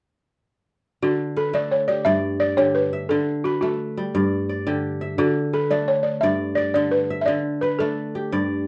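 West African traditional music with a joyful, hypnotic mood, this short excerpt flows in 12/8 with a straight feel. The balafon and kora both enter at 1.0 seconds and play together through to 8.7 seconds, both placed up front. The balafon carries the melody, its woody, buzzing tone struck with soft rubber mallets and kept dry, with a vintage, band-limited character. Beneath it, the fingerpicked kora spins ringing, crisp arpeggios that reach from its low register up to the top of the melody's range. A moderate studio reverb and a dark production frame the two instruments, while the harmony moves between D and G chords.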